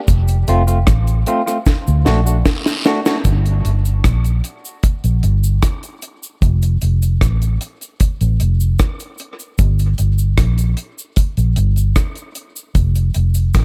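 A dark, round bass with a foam-muted, amped tone opens this hypnotic, heavy dub reggae excerpt, joined at once by a deep reggae drum kit and a compressed, saturated cabasa and guiro part set back under dub echo. The drums sound dry and smooth, with a tight kick, a high-tuned snare, rim clicks, hi-hat and a rolled-off top, sitting up front alongside the bass in a straight 4/4 feel. A clean, twangy electric guitar plays fingered accompaniment from 0.5 to 3.2 seconds, softened by a low-pass filter and trailed by dub echo. A drum fill from 1.7 seconds leads out of the brief opening over F and D chords into a longer passage that moves between G minor and F. The excerpt sits in a small room with light reverb, and the harmony drops out at 12.8 seconds, shortly before the recording is cut off at 13.6 seconds.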